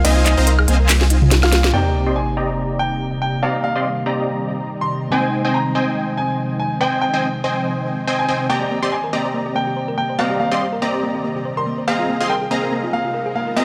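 Future bass with a lush, bittersweet mood and a half-time swing, opening on a drop where punchy detuned supersaw stabs, a thick saturated sub bass and a crisp, sharp trap kit with handclaps, woodblock and toms drive a drum fill into an impact at 1.7 seconds, after which the drums and bass stop and a clear grand piano melody carries on over a clean tine electric piano, an ethereal tremolo pad entering at 2.8 seconds, a filter-swept supersaw riff, a warbling, vintage thumb-piano-like pluck returning in the background at 8.5 seconds, and faint sub drops and risers, all set in a lush hall reverb.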